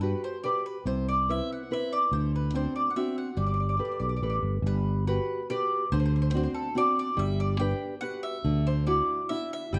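Set in the moderate reverb of a recital hall, this short cut from a longer Italian folk serenade in G major moves in a straight 3/4 at 142 BPM, its mood passionate and wistful. Up front, a bowl-back mandolin carries the melody with warm, doubled-string picking, a small-bodied nylon-string guitar fingerpicks the accompaniment, and a sustaining fretless electric bass adds an amped, growly low end. The same phrase is heard twice over chords such as Gmaj7, Cmaj7 and D7, with the second pass closing on Dadd9 at 8.4 seconds.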